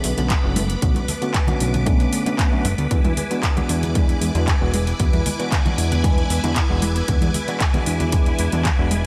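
A gritty, overdriven reed electric piano under a filter sweep, phaser and dub echo accompanies this feel-good, groovy nu-disco excerpt at 115 BPM in E mixolydian, with a lush, sidechain-pumped string machine holding vintage chords over Bm7 and E7, a very quiet detuned unison pluck arpeggiating, a fat sawtooth analog bass, a pop drum kit of handclaps and metallic hats, ringing, dry congas entering at 0.2 s, and a punchy, tape-warm electronic kick joining at 0.3 s.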